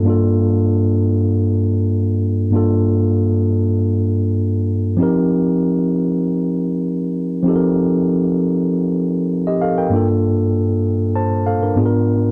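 A mellow, clean tine electric piano plays alone from the start, spanning G2 to A5 up front with light reverb through its built-in speakers, carrying a bittersweet, smooth soul mood in G minor at 97 BPM in a straight 4/4, moving from Gm7 to F9sus4 before a new section at 9.9 seconds brings Gm9 and a G#dim7 in this close, dry 1970s-style studio excerpt cut from a longer piece.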